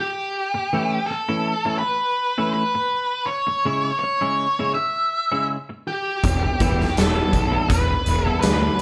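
An octave-fuzz lead guitar, dark and up front, carries a brooding melody from the start of this short quiet-loud alternative rock excerpt, over bright, clean, twangy electric guitar arpeggios moving from A to C#m to Em. At 6.2 seconds a punchy fuzz-overdriven picked bass and a huge, natural arena drum kit with hi-hat, punchy kick and medium-tuned snare come in. The band plays live in one room, wrapped in moderate large studio reverb.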